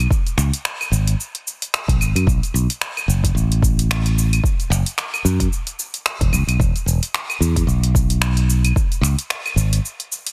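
Sunny and smooth, this short sunset chillout excerpt at 111 BPM rides a swung sixteenth-note feel, with an up-front fingered electric bass running from E1 to F#2 beneath a deep house drum kit of cabasa, claves, finger snaps and hi-hat with a soft-clipped snare, plus a deep, overdriven electronic kick re-recorded in a small room, all in a dry, dense, heavily limited modern master.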